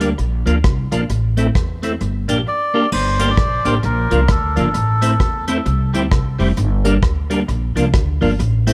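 A swung 4/4 ska groove at 132 BPM drives this mischievous fragment in G dorian, cut from a longer piece, with a soft brush kit of tight kick, rim click, hi-hat and crash carrying tape echo beside a woody, growly pizzicato upright bass, both up front. A twangy, clean picked electric guitar accompanies as a fat tonewheel organ punches percussive stabs, lightly overdriven with key click, chorus vibrato and a slow rotary speaker, over changes moving through Bb, Am, Gm and C. From 2.5 to 5.5 seconds a reedy, breathy melodica carries the tune with tape echo, all set in a small room with light reverb.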